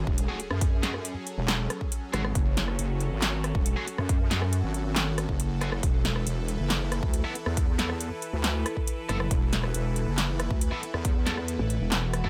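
Heavy wobble dubstep at 138 BPM in a half-time 4/4 feel and F# minor, this aggressive excerpt opens on an impact and moves from F#madd9 to Esus4 at 5.8 seconds, with a punchy, layered electronic kick and a big-room kit of snare, handclaps, metallic hi-hats and rim clicks sitting up front in a small, dry room. A saturated, detuned square-and-sine wobble bass with chorus and overdrive drives the low end until 11.6 seconds, joined by a pulsing pluck wobble bass in a brief burst at 2.1 seconds and again from 9.1 seconds. Above sit a lush, bright supersaw pad with phaser and sidechain pumping and double-tracked stabs of picked, distorted electric guitar through tape echo, while a background sub drop and swell frame the passage.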